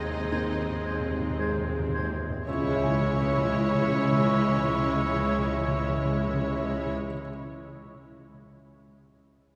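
Bathed in a wet cathedral reverb, this longing, sorrowful cinematic orchestral piece slows through its opening under a timpani fill, as a very quiet violin section carries the melody while clarinet, a second violin section, airy flute and oboe add second lines over viola accompaniment, mellow French horn chords, and bowed cello and double bass beneath, with a felt-muted upright piano, its action noise audible, lingering alone once the others stop at 6.9 s until 9.6 s.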